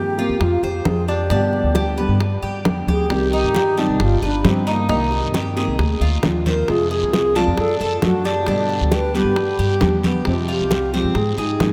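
A woody, thumpy pizzicato upright bass with steel strings sits up front in this danceable Cuban son and guajira excerpt, moving at 134 BPM in a straight 4/4. Above it an airy alto flute with a straight tone, soft attack and a somewhat unsteady delivery carries the melody, close-miked and warm. A dark, full-bodied nylon-string guitar fingerpicks the accompaniment, while a bright, metallic Cuban tres with double strings, some doubled at the octave, picks arpeggios. Very quiet percussion fills in underneath: ringing, medium-tuned congas played with hard hands enter at 0.2 seconds, round low-tuned bongos follow at 0.4 seconds, and a raspy guiro joins at 3.1 seconds. The harmony moves through Fm, G, Cm, Cm7, Ddim, D/F# and Fmadd9 before landing on Ab. The whole ensemble sits in a vast, echoing cathedral reverb with a long tail.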